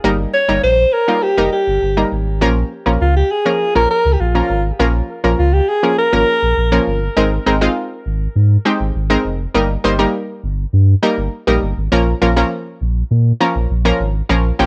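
A straight 4/4 dance-pop groove at 101 BPM in Bb dorian drives this confident, energetic excerpt from a longer piece, where a deep sine-and-triangle sub bass with octave and a round, warbling analog pluck with chorus and cassette-tape colour play throughout, while a clear alto saxophone with vibrato, tape character and analog delay carries the pop-style solo melody from 0.3 to 6.8 seconds over Eb/G and Bbm chords, all in a moderate-reverb home cassette recording.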